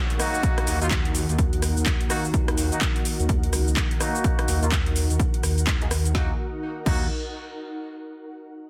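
Bass house with an aggressive, swaggering attitude, this short cut from a longer piece rides a swung sixteenth-note groove in 4/4 over a single minor chord. An overdriven garage drum kit of woody snare, metallic hats, handclaps, rim clicks, shaker and crash cymbal sets the groove in motion, soon joined by a punchy electronic kick drum with a tape-touched body that drives the track. A thick, swirling detuned saw bass enters at 0.7 seconds, dark and phased with tube saturation, while a clear, punchy horn section fires pop-style stabs with vibrato through a low-pass filter and digital delay, and both carry a filter sweep until 6.1 seconds. Behind them, a sweeping resonant pad holds evolving sustained chords in the background and an ethereal, airy pad adds mellow, reverb-soaked texture, both breathing with sidechain pumping, as does the bass. A barely audible downlifter trails through the opening moments. 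The mix is dense and heavily limited, with a light room reverb, and the airy pad carries on alone to the end at 8.0 seconds.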